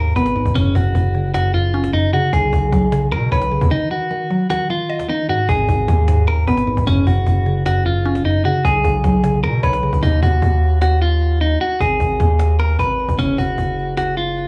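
A half-time feel in 4/4 gives this melancholic yet hard-hitting trap cut its heavy, unhurried sway, with a short break from 3.7 to 4.5 seconds. Underneath, a distorted 808-style bass sits up front, saturated and aggressive, its sine body roughened by a noise layer and a fast attack that decays away. A cajon, snappy with audible snares and played with soft hands, stays close but in the background. Up front, a clean, picked electric guitar carries the melody, its compressed tone trailed by tape echo, while a woody, round FM synth pluck with a mallet-like quality and a chorus shimmer adds mellow accompaniment until it stops at 10.0 seconds. The harmony cycles through dark minor and suspended chords, the whole fragment set in a light, small room reverb as a piece cut from a longer work.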